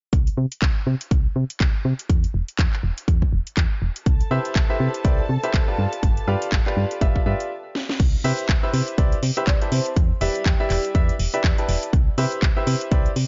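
A punchy, round FM bass with tube saturation and sidechain pumping sits up front with a punchy electronic kick, while a house kit of cracking snare, metallic hats, handclaps and crash drives this uplifting, feel-good piano house cut at 122 BPM in C major with a swung 16th feel. A dark, woody violin section holds sustained chords from 4.1 to 7.5 seconds, a clear, worn grand piano riff with short sustain and digital delay enters at 4.3 seconds, and after a brief stop and drum fill, an airy, dreamy lead with chorus and delay floats in the background around 9.5 seconds. The production is dark and warm, with the drums re-recorded in a small room and a digital ambience.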